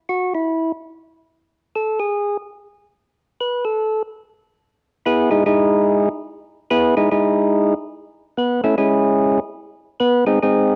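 Bluesy and soulful, this swinging jazz excerpt features a lone percussive tonewheel organ, fat and lightly overdriven with third-harmonic percussion and a stopped rotary speaker, sitting up front in a moderate spring reverb on a home cassette recording as its unaccompanied line settles onto Emaj7/G# at 5.0 seconds and moves through Amaj7 before it cuts off at 10.8 seconds.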